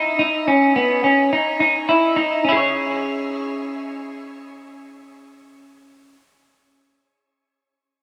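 A semi-hollow electric guitar carries this short dream pop fragment alone, its clean, picked tone sitting up front with the round body of a hollow instrument. Lush chorus and tape echo thicken each note, and a wet shimmer reverb with a 4.6-second tail spreads a hazy glow around the playing. The mood is ethereal and hazy, set in C# minor at 107 BPM in a straight 4/4, with the tuning a touch under standard at A4 = 439 Hz. The opening passage floats free of any chord until a C#5 arrives at 2.4 s, where a second section begins. The guitar moves between B3 and C#5 and plays until 6.2 s, as this cut is taken from a longer piece.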